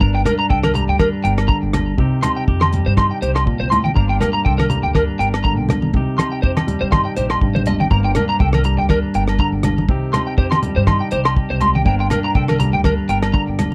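A dry, close recording in a 1970s studio manner carries this danceable, bittersweet highlife guitar band excerpt in G minor at 122 BPM, its sixteenths swung as the harmony alternates between Gm and Cm. Up front, a slightly broken-up, picked electric guitar spins high arpeggios through ensemble chorus and tape echo until 13.4 seconds, while a clean, fingered semi-hollow guitar supplies compressed accompaniment beneath. A woody, thumpy pizzicato upright bass and a cloth-damped, gritty drum kit with a rolled-off top, tight kick, hi-hat and rim clicks anchor the groove, joined at 0.3 seconds by ringing agogo bells and low-tuned, soft-handed congas sitting in the background.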